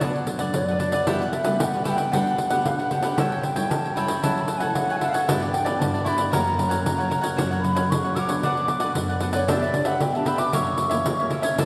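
Crisp picked cavaquinho, full-bodied thumb-plucked nylon-string guitar with finger squeak and a jingly, close, dry pandeiro up front open this joyful, sunny samba-choro fragment in B minor at 114 BPM, joined at 0.5 s by an airy wooden flute soloing with vibrato, a crisp attack and an unsteady tone, all set in the long wet reverb of a church, with faint mains hum and lossy compression artefacts.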